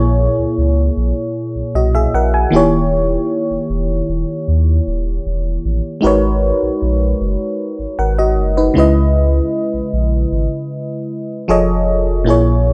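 Moody and late-night, this short contemporary R&B excerpt moves at a slow 77 BPM in G# minor, tuned to A4 = 445 Hz. A glassy, bell-like FM electric piano with a warbling chorus and a noise layer carries the chords up front, from A#m7b5 and D#7b9 through G#m11 and C#m7 to a closing F7alt. Beneath it a deep, round sine sub bass sustains mellow low notes, all set in a digital ambience with a dry, gritty hardware sound and transformer saturation.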